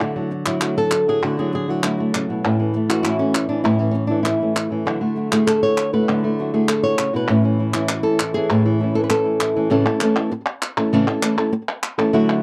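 A fast, straight four-beat drive carries this festive, fiery flamenco excerpt, where an up-front, fingerpicked lead guitar with a slapback echo spins the melody over a bright second guitar's stabs, which drop out at 9.7 seconds, while crisp palmas hand claps keep time throughout in a dry, close booth sound with a 1970s studio feel.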